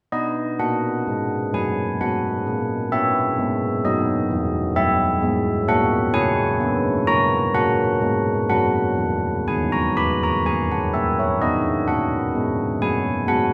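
Serene yet festive, this short classical excerpt of a church-bell tune moves at an unhurried 64 BPM in 3/4, with a solo carillon of bronze, mellow bells, each carrying a minor-third overtone, sitting up front in a moderate recital-hall reverb as the harmony travels from B through C#m7, F#/A#, B and F# before settling back on B at 11.4 seconds.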